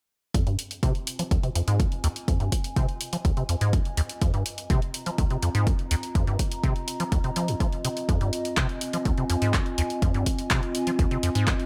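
A straight 4/4 groove at 124 BPM drives this raw, trippy acid house excerpt in F minor, built on an overdriven electronic kick drum that sits dry and punchy up front. Alongside it, a punchy analog drum machine adds overdriven handclaps and hi-hat, with both drum parts carrying a small room ambience. The acid bass plays a riff between Eb2 and F3 with a squelchy, hollow square-wave tone, resonant filter plucks and fast-attack, decaying notes, thickened by analog chorus and shaped by a filter sweep throughout. From 1.0 s a warbly, tape-like pad joins between C4 and Bb5, nostalgic, lo-fi and dark, with slow attack, long release, chorus, its own reverb and sidechain pumping. The whole piece rests on a single Fm7 chord, set in light reverb with a digital ambience.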